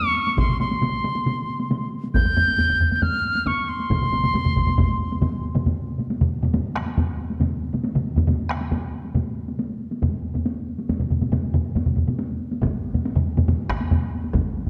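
A mellow, pure-toned piccolo opens this driving, powerful Japanese taiko ensemble piece, sitting up front with tongued notes and vibrato in a high register before it stops at 5.4 seconds. Four taiko drum parts carry the rest, struck with hard or heavy sticks: one sounds close and dry at the front of the mix, another close, one in a live room and one in a small room. Most of the drums enter within the first half second, a further part joins at 2.1 seconds, and one drops out early before returning near the end. The straight 4/4 pulse starts around 137 BPM and speeds up across the whole cut, moving from an opening passage into a second section at 5.7 seconds that runs to the close. A dark production and a concert-hall reverb lend the drums weight, and the music is clipped from a longer performance.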